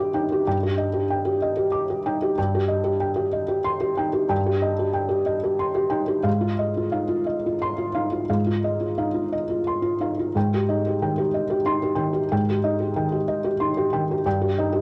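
Moving in a rubato 6/8 at about 62 BPM counted in dotted quarters, this neoclassical minimalist piano piece drifts with a wistful, reflective mood. A felt-muted upright piano plays alone from start to finish across its roughly 14.8 seconds, spanning G2 to D6 and tuned slightly low to A4 = 438 Hz. Its tone is soft, mellow and intimate, with short sustain and audible action noise that keeps it close and up front, while a touch of tape echo trails behind the notes. The harmony moves through Ebmaj7/G, Cm/G and Fm7/Ab before settling on Abmaj7 at 10.4 seconds, where the opening material returns, and closes on Eb/G. A light, small-room reverb and the cassette home recording give the sound an intimate quality, and the clip is cut from a longer piece.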